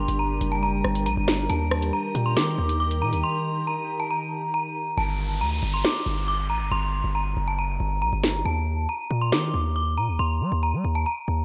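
Cold and dark, this half-time drill excerpt at 138 BPM in G harmonic minor moves between G minor and E-flat chords. A bright, inharmonic FM bell rings out the melody up front with chorus and analog delay over a heavy, distorted 808-style bass, while a glassy, ethereal FM pad with ensemble chorus holds sustained chords through the opening section. The electronic drill kit, with its sharp snare, rim click and metallic hi-hats, drops out for a break at 3.2 s, a downlifter enters at 5.0 s, and the drums return at 5.8 s with the hi-hats muted, all within a dreamy mix soaked in plate reverb.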